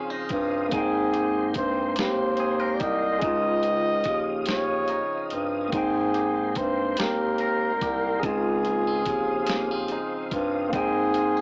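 In a slow six-eight, this intimate, sensual R&B excerpt sets a breathy flugelhorn melody with vibrato and scooped notes up front over a mellow, tube-saturated bass clarinet line, a dusty sampler-style drum kit with a thumpy kick and 12-bit grit, a barky, overdriven tine electric piano, a twangy clean guitar second line with spring reverb, and a chorus-vibrato tonewheel organ turning on a slow rotary speaker in the background, while the harmony rocks between Dbmaj9 and Abmaj9 through a gritty, small-speaker sound, with a break from 4.5 to 5.7 seconds.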